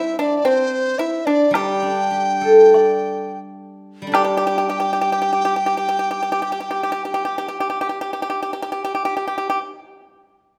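Loosely pulsed in 2/4 and played rubato, this passage from a longer Chinese traditional chamber piece eases to a slower pace over its first 4.1 seconds before settling into a new section. The mood is festive yet pastoral. Up front, a mellow, hollow bamboo dizi carries the melody with a straight, tongued tone, airy breath and a buzzing membrane, and it drops out at 7.6 seconds. Beside it, a dry, percussive pipa plucked with fingerpicks adds a warm second line. The steel-string zither, also fingerpicked and the loudest part, supplies a ringing, silvery accompaniment. A close woodblock taps in the background from 1.5 to 4.8 seconds, and a moderate recital-hall reverb gives the ensemble a sense of space.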